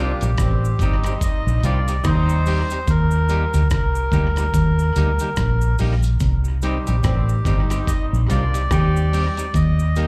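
This live club recording carries a touch of room reverb through the venue's PA, and the bass sits up front in the mix. It is a serious, laid-back roots reggae excerpt at 72 BPM in C dorian, with a swung sixteenth feel and chords moving between Cm and Eb. A reedy, nasal melodica carries the melody in tape and slapback echo, while a mellow, distant horn section plays a second line beneath it, falling away at 9.3 seconds. A bright, clean semi-hollow electric guitar picks out the accompaniment, and a dark, foam-muted fingered bass gives a round, punchy low end. From 0.2 seconds a gritty, compressed sampler-style drum kit adds a thumpy kick, hi-hat and rim click with tape echo, and a close, dry cabasa sits quietly in the background.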